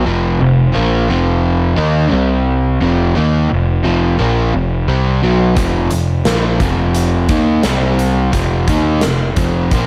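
A straight 4/4 pulse at 87 BPM drives this sunny, confident classic rock clip, cut from a longer piece, where a crunchy, double-tracked overdriven guitar riff moves between F5 and C5 power chords over a punchy fuzz bass, both sitting up front. At 5.6 s a big acoustic rock kit arrives with a punchy kick, a medium-tuned snare and hi-hat, its mid-forward sound carrying a rolled-off top and the air of a big room. The whole clip sits in a small room ambience.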